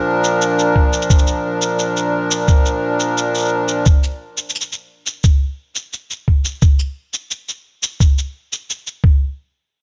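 The recording has a soft, dim sound, with a light studio reverb and its upper highs rounded off. This short folktronica excerpt in Bb major moves at an unhurried 87 BPM in a straight 4/4, carrying a pastoral, playful mood. A reedy, dark accordion sits up front with a slow beating in its tone, holding a sustained Bb chord from the opening until 3.9 seconds, after which the harmony falls away. A muffled shaker enters at 0.2 seconds and a thumpy electronic kick drum joins at 0.8 seconds. Both are sampler-style, compressed and pitched down. The kick is placed prominently in the mix, while the quieter shaker stays in the background, and the two carry on together after the accordion has stopped.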